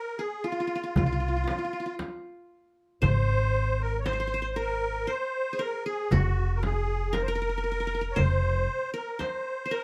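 The musette accordion leads this melancholic, longing Arabic maqam ensemble piece, its reedy, shimmering wet tuning placed up front as it carries the melody from F4 to Db5 in F maqam kurd. Beneath it, a plucked qanun with bright-edged triple strings plays a second line in a close range, while a woody, growly pizzicato upright bass sits prominently low, entering at 1.0 s. The piece moves at 117 BPM counted in eighths, in a straight 10/8. A crisp, small metal-shell darbuka sits in the background from 0.4 s, joined by a deep, large frame drum from 1.0 s, both heard in a small room. Light reverb surrounds this short passage, which is cut from a longer piece.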